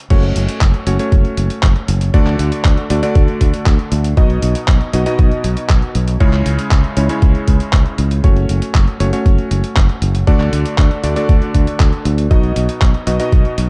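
Bittersweet and melodramatic, this italo disco fragment from a longer piece sets a thumpy, gritty electronic kick up front beneath a dusty, sampler-style kit of crash, handclaps and hi-hat. A growly, punchy fingered electric bass holds down the low end while a clangy, chorused electric grand piano with tape echo jabs out stabs over an F#m–D–B–C#m cycle, all in a dark, dry production.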